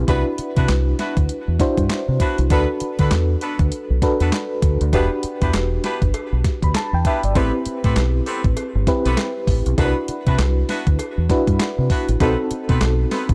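At 99 BPM in 4/4 with a 60% swing on the sixteenths, a crisp 8-bit drum machine sets a confident, slick new jack swing groove in this R&B excerpt, its thumpy kick, medium-tuned snare, handclaps and hi-hat sitting up front with a tape-warm, sampler-style edge. Underneath, a deep dub fingered electric bass plays round and punchy, dark and direct from the amp, ranging from E1 to D3. An FM electric piano with tremolo carries the chords with a fast-attack, decaying tone and a faint noise layer, moving through Cmaj9#11, Bm7/D, Em7, Am9 and back to Cmaj9#11 before landing on B7b9 at 12.2 seconds. A tight jazz-style horn section adds stabs with light vibrato and octave doubling, set further back and touched with delay. From 4.9 seconds a very quiet metallic cowbell joins, recorded acoustically in a live room. The production is dark and dry, with little reverb, keeping the parts close and present.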